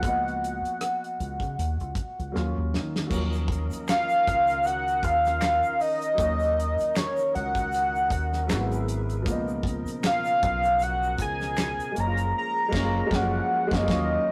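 A rough rehearsal-room recording with light reverb and warm saturation carries this introspective, sultry neo-soul R&B excerpt at 78 BPM in Eb minor, where a fat, detuned sawtooth lead with chorus and vibrato sings the melody up front over woody upright piano, a round, punchy fingered electric bass and a damped 70s drum kit with a fat snare and dark cymbals, a drum fill at 2.3 seconds ushering in a slow-rotary tonewheel organ with key click and a background egg shaker with finger snaps at 3.1 seconds, before a band accent arrives at 12.3 seconds.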